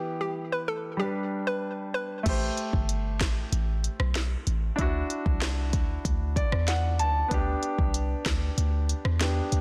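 A baby grand piano and a hollow, bouncy square-wave pluck, coloured by chorus and digital delay, open this tough, sultry dancehall excerpt in A dorian at 95 BPM, the pluck carrying a brief melody over Em and G during the opening break. At 2.3 seconds a deep, boomy 808-style bass and a produced electronic afro-pop kit with a deep kick, sharp snare, smooth hi-hats, rim clicks and crash arrive over Am7, Dadd9 and G. The piano adds a fill at 6.0 seconds, all of it sitting in light digital ambience within a dense, heavily limited modern master.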